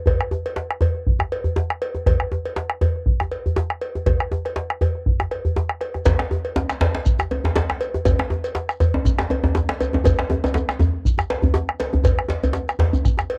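Powerful and festive, this West African drum ensemble excerpt at 120 BPM in 4/4 with a light sixteenth-note swing opens with a deep, dark bombo held close and up front, a tight, cracking djembe with metal rattles, and a metallic cowbell, before a second djembe with soft hands and a warm, deep tone joins at 6.1 seconds alongside a grainy, mellow shekere, all captured in a moderate booth ambience on a home cassette recording.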